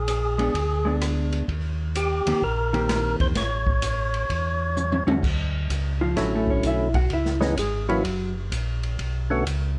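Swinging and greasy, this soul jazz organ trio excerpt moves at 128 BPM in a swung 4/4, with a fat, lightly overdriven percussive tonewheel organ carrying the melody through a slow rotary speaker and plate reverb, a round, mellow tonewheel organ with key click holding down the bass, a roomy, distant acoustic drum kit with dark cymbals and a boomy kick that drops a fill just before the clean, compressed hollow-body jazz guitar takes its solo at 5.2 s, all coloured by worn cassette tape with warbly pitch drift.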